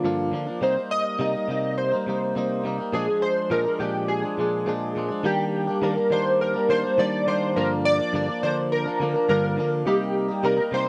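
A straight 4/4 pulse at 104 BPM carries this laid-back, sunny indie pop fragment in Eb major, tuned to A4 = 442 Hz, moving from Gm7 and Cm7 through Bb7 into Ebmaj7 after a new section begins at 5.2 seconds. Glossy, detuned retro synth keys sit up front with the melody, their pulse-wave and sawtooth tone shimmering with ensemble chorus, tremolo and a filter sweep. Beneath them, a twangy, scooped clean electric guitar, recorded direct and compressed, plays picked accompaniment through lush chorus and warbly pitch drift, all captured in a dry, close 1970s-style studio sound with light reverb.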